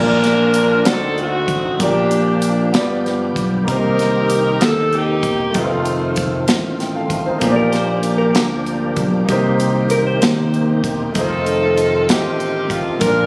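A clear saxophone section opens this soulful, uplifting slow gospel excerpt at 64 BPM in a straight 6/8, carrying the melody up front with light vibrato over a clear, intimate baby grand piano whose action noise and long sustain can be heard. Beneath them, an overdriven tonewheel organ holds thick, gritty sustained chords in the background, its slow rotary speaker, chorus vibrato and key click adding motion and bite. A bright, growly fingered electric bass gives a punchy, direct low end, while a tight funk drum kit with a tight kick, medium-tuned snare and hi-hat sits dry and polished at the front from 0.2 seconds. The saxophones drop out at 6.5 seconds, and a twangy, compressed twelve-string electric guitar plays a clean, picked second line from 7.6 to 11.1 seconds before the horns return for the final stretch. The harmony moves through jazzy gospel colors from Bbmaj7 and D7b9 to Cm7 and F7, all set in light reverb with a roomy, phone-captured feel.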